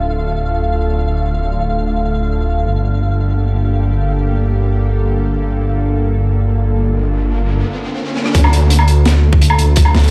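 A dark, detuned saw bass dominates this heavy, spacious half-time drum and bass excerpt in D minor, its deep, rumbling tone beating and saturated up front from the first second to the last, spanning D1 to D2. Above it, a tense, string-like bowed drone holds sustained chords in free time, its sound roughened by vintage 12-bit sampler grit, softened by built-in reverb and pumped by sidechain, with vibrato on its long notes. A faint pulsing gated texture sits high on a single F5, its detuned triangle tone shimmering through chorus and reverb until 7.6 seconds, while the harmony moves from D minor to G minor add9 and back. An electronic riser builds from 6.7 seconds, and after a drum fill the drop lands at 8.3 seconds with a tight, layered kick placed up front and a crunchy breakbeat kit of hi-hat, rim click, snare and woodblock whose gritty, rolled-off top feels small-room and dark. The whole mix plays as if through a big sound system in a bare room, bathed in large studio reverb.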